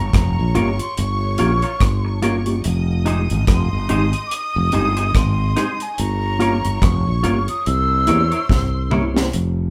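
Lovers rock reggae in F minor at 72 BPM, a smooth, bittersweet excerpt with a swung sixteenth-note feel that moves through Gm7b5, Fm7 and C7b9 chords. A breathy, hollow concert flute carries the melody with vibrato over lush bowed strings, a mellow tine electric piano and clean, twangy guitar stabs bathed in spring reverb, while a growly fretless bass sits up front beside a dry, deep drum kit with a high-tuned snare and tight kick. The band plays together in a moderate room ambience, and the drums close with a fill at 8.5 seconds.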